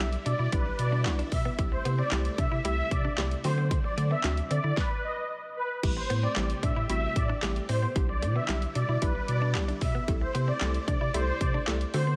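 Dance-pop at 113 BPM in a straight 4/4, this short clip from a longer piece feels confident yet bittersweet, moving through Em7/B, C6 and D7 before a stop from 4.8 to 5.8 seconds, then resuming on Am7. Up front, a punchy, layered electronic pop kit with a fat snare, handclaps, hi-hat and crash cymbal sits alongside a deep, round sine sub bass that pumps with the sidechain. A filtered supersaw swell carries the melody from 0.3 seconds, its detuned unison sawtooth tone evolving softly under tape echo. Beneath it, a hollow, bouncy square-wave pluck with a warbling, wave-folded, detuned character plays the accompaniment through chorus and sidechain pumping, while a clean, picked electric guitar, recorded direct and compressed, plays a riff in the background with subtle chorus. A swirling, bright vintage string machine holds sustained chords further back, colored by ensemble chorus, phaser and pumping, and the whole mix sounds dry.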